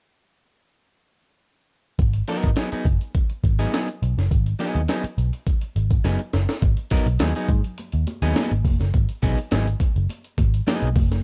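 Funk at 104 BPM in G# minor, hypnotic and driving over a G#m7 chord, with a round, foam-muted picked electric bass and a gritty, pitched-up breakbeat sampler-style kit (thumpy kick, high-tuned snare) sitting up front, a slightly broken-up picked electric guitar adding accompaniment, and, after a drum fill at 6.0 seconds, bright, hard-handed congas entering in the background at 6.6 seconds, all within a dry, dark production cut from a longer piece.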